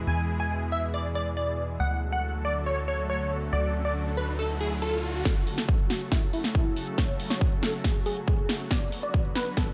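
A punchy, tape-warm electronic kick drum lands at 5.3 seconds with a big-room kit of snare and metallic hi-hats in this euphoric, emotional uplifting trance passage at 139 BPM in F# minor, where a detuned supersaw stab carries the melody through cassette-tape colour, low-pass filtering and tape echo over a lush, slow-attack supersaw pad and a tight, driving sequencer bass that stops at 5.2 seconds, while a background riser leads into the drum fill, and the pad, bass, stab and hats pump to the sidechain.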